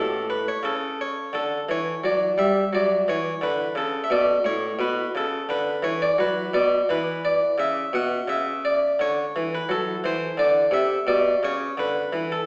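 In a flexible, rubato four-beat pulse, a solo harpsichord plays a serene, radiant baroque-style suite movement, cut from a longer piece. The single-strung Flemish-style instrument sounds plucked, round and full, close-miked and up front, moving through chords such as D, Bm, E5, C#m and D7 before settling on Bmadd9 near 11.1 seconds. Around it, a wet recital-hall reverb and an AM-radio tone make the performance seem heard from further back in the room.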